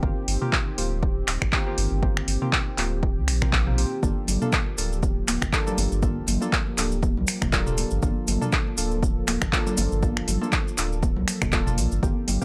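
This earthy afro house groove opens with a warm analog pad holding sustained chords in the background, alongside round analog keys playing decaying stabs and a deep, sine-like sub bass, all pumping against a punchy, layered electronic kick that sits up front. From 0.3 seconds an afro-pop drum kit joins with finger snaps, handclaps, metallic hi-hats and toms, its tape-tinged sound also placed forward. At 4.0 seconds bright, high-tuned congas and a grainy cabasa enter, filling out the percussion as the harmony moves from Eb6 to Gm7 in G minor. The piece moves at 120 BPM in 4/4 with a light 16th-note swing, the keys carrying chorus, a filter sweep and analog delay while the pad adds a smooth, detuned glow with a slow attack and long release. The overall sound is dry and gritty, with a digital ambience, in this short cut from a longer track.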